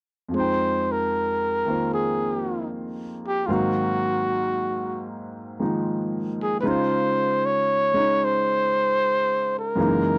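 A dry, close recording in a 1970s studio style, touched with light reverb, frames this smoky, melancholic jazz ballad in F minor at 76 BPM, swung in 4/4 and cut from a longer piece. A breathy, mellow trumpet carries the solo melody up front, with soft attacks, scooped notes and light vibrato. Beneath it, a clear concert grand piano with deep bass, long sustain and audible action noise voices Fm9, Ab13 and Dbmaj9 in an intimate, polished accompaniment.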